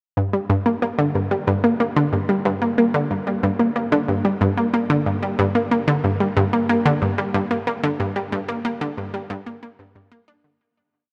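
Drenched in a huge, long-tailed ambient reverb, this short, cosmic and mysterious ambient piece in G minor at 92 BPM features a lone analog pluck, round, detuned and bright with chorus and delay, cycling a six-step sequence that drifts against the 4/4 bar before fading out from 7.1 seconds to its end at 10.6 seconds.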